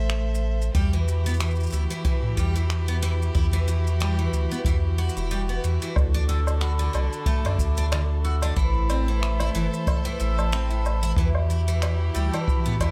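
Set in a studio reverb, this wistful, intimate folktronica excerpt in E minor moves at 92 BPM with a light sixteenth-note swing: a round, up-front sine sub bass and a dark, boomy kick sit beneath a rolled-off shaker, finger snaps and woodblock, while a bowed chamber string quartet holds smooth sustained chords through Am, Emadd9 and D, a bright, shimmering octave-doubled twelve-string guitar picks delayed arpeggios from 0.7 seconds, and at 6.3 seconds a ringing vibraphone with slow motor vibrato adds a high second line roughened by 12-bit sampler grit and delay.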